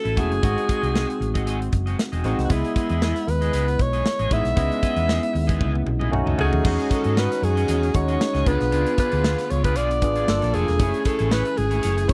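A clear, up-front alto saxophone carries the melody over a barky, lightly overdriven tine electric piano, a twangy, slightly broken-up guitar riff, a dark, round hollow-body bass and a studio drum kit with a tight kick in this glossy, upbeat 1980s jazz-funk pop excerpt, with a drum fill and electric piano fill leading at 6.6 seconds into a very quiet bowed string section of smooth sustained chords, all in a dry, close small-room sound.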